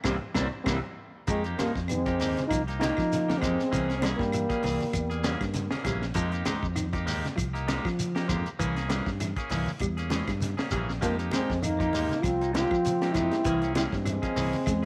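A veiled, breathy bucket-muted trombone carries the melody up front, shadowed by a distant, vibrato-laden clear trombone on a second line, entering at 1.3 seconds, dropping out at 5.8 and returning at 11.0, over a driving, hypnotic afrobeat groove in F minor at 99 BPM, built on a gritty, saturated breakbeat kit with a high-tuned snare, a round fingered bass, bright picked guitar stabs, twangy phaser-treated arpeggios from a slightly broken-up guitar, a reedy electric piano in the background, low-tuned congas, a grainy shekere and woody claves, all under light reverb as the harmony alternates between Fm11 and C7b9b13.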